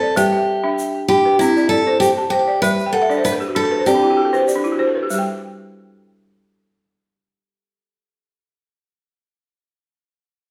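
West African traditional string and xylophone music in G major at 97 BPM, hypnotic and flowing, where a woody, buzzing balafon played with rubber mallets spins up-front arpeggios through 8.8 seconds with a fill from 2.9 to 5.1 seconds, a picked steel-string acoustic guitar carries a warm melody with slapback echo until 4.4 seconds, and a grainy, bright egg shaker sits close and soft, all captured live in one room with a wet large-studio reverb in this short cut from a longer piece.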